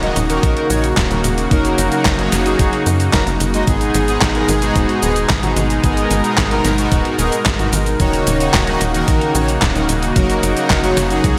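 A straight, driving synthwave groove in four opens with a 12-bit drum machine's cabasa, handclaps, hi-hat and snare sounding together with a punchy sawtooth sequencer bass, sidechain-pumped detuned pad chords and bold, brassy synth stabs with chorus, delay and slapback echo. A thumpy electronic kick joins at 0.4 s, the bass pulsing beneath the pad and brass, all set in a lush hall that gives this moody fragment a big arena sound.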